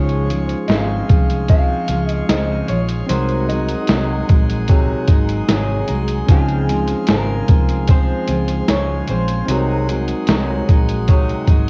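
A hazy, laid-back slice of indie and bedroom pop, cut from a longer piece and moving at an unhurried straight pulse over a gentle sway between Dbmaj7 and Ab7. A slightly broken-up electric guitar through a small old amp carries the melody, its lo-fi tone bathed in lush chorus and tape echo until it drops away at 9.8 seconds. Beneath it, a full-bodied jumbo acoustic guitar is picked with audible finger squeak, thickened by analog chorus and a warbly pitch drift, while a bell-like tine electric piano sits bright and clean in the background with a cassette-tape tint. A brilliant plenum pipe organ holds sustained chords high above, its baroque voicing and mixtures touched with chiff, and a foam-muted fingered electric bass gives a dark, round low end. Up front, a lo-fi sampler-style kit with thumpy kick, medium-tuned snare and hi-hat enters at 0.1 seconds, compressed and muffled with 12-bit grit, re-recorded in a large room, all within a dry home cassette recording.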